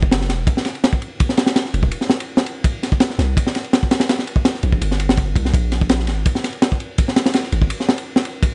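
A gritty, saturated breakbeat kit sits up front in a small room, its punchy kick, high-tuned snare and dark ride cymbal driving this dark, raw drum and bass and jungle excerpt at 166 BPM, while a deep, sine-toned 808-style bass with a fast attack sustains long decaying notes until 7.7 seconds, all in a dry, rolled-off mix.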